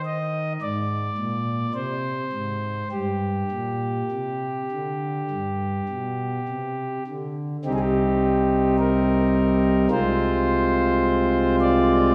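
Grave and dark, this short classical excerpt is a chorale-style passage for solo pipe organ in C minor, moving slowly at around 50-54 BPM in 4/4 with a free, rubato feel. A single principal stop carries everything, its tone warm and smooth with a baroque voicing, placed up front and spanning from deep C2 up to Eb5. After a brief unharmonized moment, the harmony settles on an A-flat added-ninth chord, then leans through a G suspended fourth that resolves to G major before a new section begins at 7.7 seconds on C minor, followed by F minor over a C bass. A resonant recital-hall reverb with a 1.6-second decay surrounds the organ, lending the chords a solemn, spacious halo. Lifted from a longer piece, the passage ends at 12.1 seconds.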